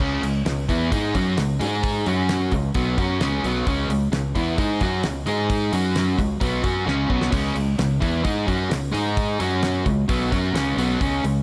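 A straight, driving 4/4 groove from a damped 70s drum kit, with a fat snare, tight kick, hi-hat and crash, carries this swaggering classic rock excerpt, and a short drum fill lands at 6.9 seconds. Two up-front overdriven guitars play the picked riff together throughout: a bright, cranked stack guitar and a warm, hollow-body semi-hollow guitar. Beneath them sits a growling, overdriven fingered electric bass, while the harmony moves through Db5, Ab5 and Gb5 chords. A light, small-room reverb gives the dry sound a touch of space.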